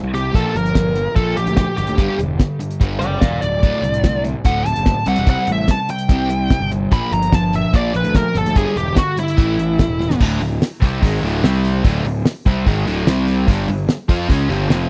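Classic rock with a swaggering, driving feel, this short excerpt moves at 146 BPM in a straight 4/4. A bluesy overdriven lead guitar, dark and distorted, sits up front and solos through the opening stretch until 10.2 seconds, over a bed of two picked rhythm guitars, one crunchy and bright, the other sludgy and overdriven, both tucked into the background. Underneath, a fuzz-drenched picked electric bass punches hard, while a cloth-damped, thuddy drum kit with a fat snare, tight kick, dark cymbals and a rolled-off top sits prominently in the mix, closing the first part with a fill at 10.0 seconds. At 10.2 seconds the solo gives way to a double-tracked distorted electric guitar riff that carries the final section alongside the rest of the band. The sound is dry and close, with a 1970s-style studio character and barely any reverb.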